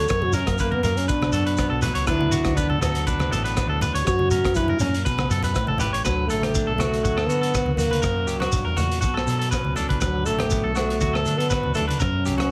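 A mellow French horn with slapback echo carries a solo melody over a joyful, danceable highlife groove at 121 BPM in D major, backed by a twangy, slightly broken-up electric guitar playing arpeggios, a bright clean electric guitar in the background, a round hollow-body bass, a gritty breakbeat drum kit with hi-hat, kick and rim click, grainy shekere and compressed congas, all set in light studio reverb.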